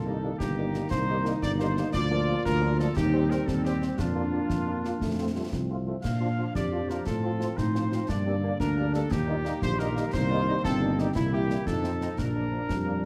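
Festive and proud, this military-style wind band march in 6/8 moves at 117 BPM in Bb major, with a light-vibrato trumpet section carrying the melody over a distant woodwind second line, punchy French horn accompaniment, very quiet sustained trombone chords, an up-front tuba bass with vibrato, close, dry concert snare, bass drum and dark clash cymbals, and a dark, soft-attack euphonium that briefly joins at 4.5 seconds, all in a moderate recital hall reverb as the chords move through C7 and F7 to a closing Bb.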